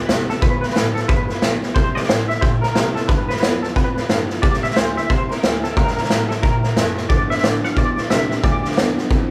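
A twangy, clean electric guitar with tremolo carries the melody over a very quiet, full-bodied picked steel-string acoustic, joined within moments by a clear, boxy baby grand piano holding down the bass and an up-front vintage drum kit with a punchy kick and rolled-off top, before a bright, slightly broken-up electric guitar through a small old amp adds a background riff at 7.1 s, all in a rollicking, upbeat rockabilly cut from a longer piece at 180 BPM with a swung 4/4 feel in G mixolydian, moving through G7, C7 and C#dim7 under light reverb like a band playing live in one room.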